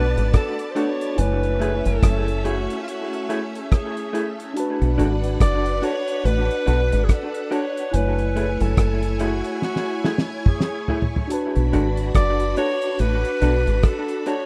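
A bright alto saxophone carries the melody in this slow lovers rock reggae excerpt at 71 BPM, its soft attack and light vibrato giving it a longing, smooth voice wrapped in tape echo and plate reverb. Beneath it, a shimmering, vintage string machine of violins sustains a second line with ensemble chorus, while a mellow tine electric piano, clean through its built-in speakers, supplies the accompaniment. Two electric guitars through a small old amp fill the middle. One is dark and lo-fi, playing a compressed, fingered riff in the background, and the other is twangy and very quiet, adding picked stabs with tremolo and echo. A deep dub fingered bass, foam-muted, round and punchy, sits up front with a cloth-damped, thuddy drum kit whose fat snare and tight kick have a rolled-off top. The drums enter at 0.2 s and play a fill from 9.6 to 11.3 s, over swung sixteenths in B dorian that move between Bm7 and F#m9 in a rough home demo mix with light reverb.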